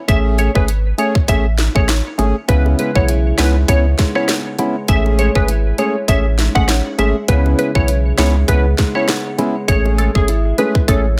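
A swung 16th-note dancehall groove at 100 BPM in 4/4 drives this bouncy, tough cut from a longer piece: an up-front electronic drum kit with a tight kick, sharp snare, hi-hat and rim click; a deep, round sine sub bass; very quiet, high-tuned bongos played with soft hands; a hollow, percussive organ stab with chorus and sidechain pumping; and a glassy, warbling wavetable pluck melody through chorus and digital delay, while a dark, boxy fingerpicked acoustic guitar enters at 2.5 s with arpeggios as the chords alternate between Amaj7 and C#m7, all with little reverb.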